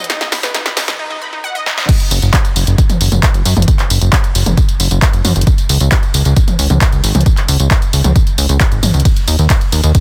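Dense and heavily limited, this modern trance master is dry, with little reverb and a high-pass filter trimming the lowest end. Cut from a longer uplifting trance piece at 134 BPM in a straight 4/4, tuned to A4 = 439 Hz, it opens on a build-up over a B chord. There, a lush, bright unison pluck spins detuned sawtooth arpeggios with a ring-modulated edge and a filter sweep, carried on delay and sidechain pumping. A punchy analog drum machine runs throughout, up front and tape-tinged from a small room, with fills through snare, toms, handclaps, hi-hat, tambourine, ride and crash, and its cymbals, toms and percussion pump in the sidechain. At 1.9 seconds the euphoric drop lands as an electronic kick drum enters, and at 2.1 seconds a funky, plucky analog bass joins, blending sawtooth and square waves with a fast-attack, decaying filter pluck, up front and pumping.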